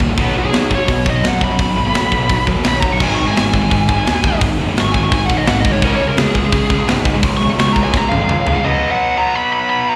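Dark and epic, this heavy metal excerpt drives in a straight 4/4, captured live through a venue's PA with a recital-hall reverb. A tight, up-front, mid-forward metal drum kit with a tight kick and medium-tuned snare, crash, hi-hat and toms sits over a growly, fuzzed picked bass, while two bright riff guitars, one overdriven with slapback echo and one high-gain distorted, sit in the background. A dark, high-gain lead guitar soars on top with slapback echo and digital delay from 0.4 seconds, and after a drum fill the band drops away at 8.6 seconds, leaving the lead and the overdriven riff guitar to carry a brief closing section.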